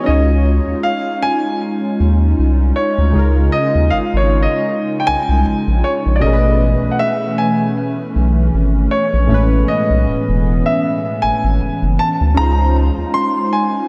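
A lightly swung sixteenth-note feel in 4/4 carries this tender, romantic contemporary R&B passage, cut from a longer piece. A polished, up-front grand piano sings the high melody with a touch of delay, over round, detuned analog keys with chorus and filter sweeps and a hollow, flute-like soft pad whose slow attack and long release hold sustained chords. A deep, thick saturated sub bass runs from 0.1 to 13.0 seconds beneath harmony that moves from Dbadd9 to Amaj9 and settles on Dbmaj9, all soaked in a lush, dreamy hall reverb.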